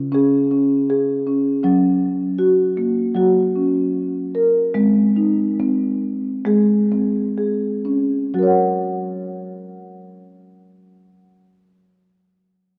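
A soft-malleted marimba opens with gentle arpeggios in a calm, meditative world style, its woody, mellow, rounded rosewood tone sitting up front in Gb lydian at 60-80 BPM with a light swing on the sixteenths. The pace slows from 1.6 to 8.4 seconds as the harmony moves from Db5 through Gb and Ab, settling back on Gb for a brief closing passage. The recording is bathed in a lush church reverb and carries the warbling pitch drift of worn cassette tape, and the marimba falls silent at 11.6 seconds in this cut from a longer piece.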